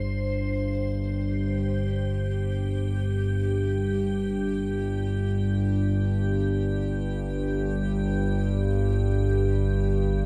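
Drifting in free time, this short, desolate dark ambient drone cut from a longer piece pairs an up-front analog drone, mellow and evolving with chorus, low between G1 and G2, with a faint, icy, crystalline glass pad held high from G4 to C5 with chorus and its own reverb, both sustained through all 10.3 seconds inside a cavernous cathedral reverb with a 7.1-second tail and a dark production.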